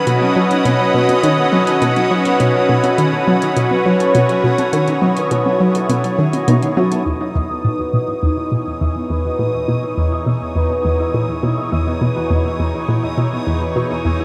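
Expansive and luminous, this ambient, sequencer-driven space music moves at 103 BPM in a straight 4/4, shifting from a B7 chord to Emaj7 as it settles into E major at 7.1 s. A squelchy, detuned blip pluck drives the low riff up front through chorus, tape grit and analog delay, beneath a thick, bright unison pad of sustained chords and a fingerpicked concert harp ringing out arpeggios through a low-pass filter and delay. A bubbling texture of random filter steps shimmers above, metallic electronic hi-hat and congas sit in the background until 7.0 s, and from 7.1 s the pad fades in while the harp takes a filter sweep, all bathed in a dreamy plate reverb.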